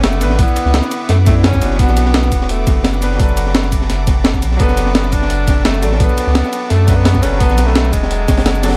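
Set in a small room, this lush, dreamy liquid drum and bass excerpt at 171 BPM rests on a D6/9 chord, with a bright, vibrato-laden alto saxophone singing a pop-style solo melody and a clear, intimate grand piano with audible action noise both trailing tape echo, distant biting strings pumping in the background, a round, up-front sine sub bass, a gritty sampler-style breakbeat kit with a high-tuned snare, a very quiet dark, saturated second breakbeat kit, and a thumpy electronic kick that enters at 0.4 seconds.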